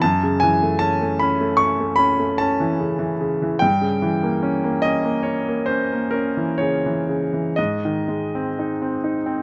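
A bright concert grand piano opens this short excerpt alone, playing a mournful, wistful romantic nocturne in 9/8 at a slow 40-51 BPM, counted in dotted quarters, with free rubato, tuned to A4 = 441 Hz. Its brilliant upper register and deep bass span F#2 to C#6 as the harmony moves from F#m7 to Gdim7 at 3.6 seconds and G# at 7.6 seconds. Close, detailed microphones and very little reverb keep the natural piano tone up front.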